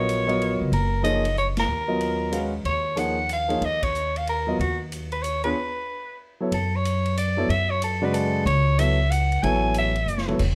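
A growling soprano saxophone leads this spiritual, hypnotic modal jazz waltz, its raspy, gritty tone full of vibrato and scooped notes, sitting up front with a vintage jazz character as it solos through this short section of a longer piece. Beneath it, a concert grand piano comps with a natural sound and deep bass, while a woody pizzicato upright bass with steel strings stays close and present. A swinging big-band drum kit sits more distant and roomy, with a punchy kick, a medium-tuned snare and a rolled-off top across ride, hi-hat, crash and toms. The band hits accents at 1.5 and 3.8 seconds, pauses for a brief break, and then the harmony moves from Ebm11 to F#m7 at 6.5 seconds for a new section. A short drum fill closes the passage, all set in light reverb.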